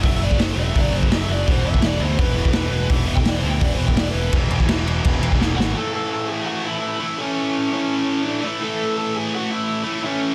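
Rowdy, upbeat punk rock cut from a longer piece, opening on a dark, overdriven lead guitar solo over a bright, double-tracked distorted riff guitar, a fuzzy picked bass and a raw, gritty garage kit with a boomy kick and pumping small-room sound, until a drum fill at 5.4 seconds brings the bass and drums to a stop at 5.7 seconds and the two guitars carry on alone to 10.3 seconds, all in a dry, dense, heavily limited master.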